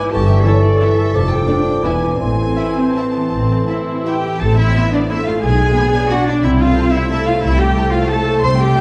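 A dark, warm production set in a wet recital hall gives this brief classical passage, cut from a longer piece, an elegant and sweeping character, moving in a rubato 3/4 in A minor at roughly 152 to 194 BPM. A focused, rich violin section carries the melody throughout, while a second, woody violin section and a lush, smooth viola section join at 0.5 seconds with a countermelody and accompaniment. Underneath, an even cello section and an up-front double bass section with vibrato anchor the bass, and a ringing, fingerpicked harp spins arpeggios in the background. For the opening 4.2 seconds, a pure, straight-toned flute and a dark clarinet add second lines while a mellow, distant bassoon offers soft-attack accompaniment before the winds fall away. The harmony moves from A7 over G through D minor and E7 to a settled A minor, later passing through a diminished chord on its way back home.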